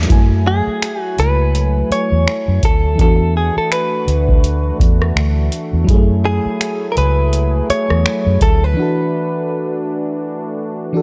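A swung sixteenth-note groove in 4/4 sets a slow, sensual late-night feel for this contemporary R&B excerpt, carried by a booming analog drum machine with a deep kick, tonal snare, metallic hi-hat, rim click and finger snaps. A dark, round, foam-muted fingered electric bass sits up front beside the drums, and both drop out around 8.7 seconds as the music moves into a short break. Underneath, a soft FM electric piano with a warbling, decaying tone and a faint noise layer shares the chords with a smooth, detuned sawtooth pad, both treated with chorus and moving between F#m9 and E9sus4. From 0.5 seconds, a clean, compressed electric guitar, recorded direct and picked, plays the melody in a narrow upper range, colored by tape echo. The production is dark and close, with little reverb, giving the whole piece an intimate, vintage glow.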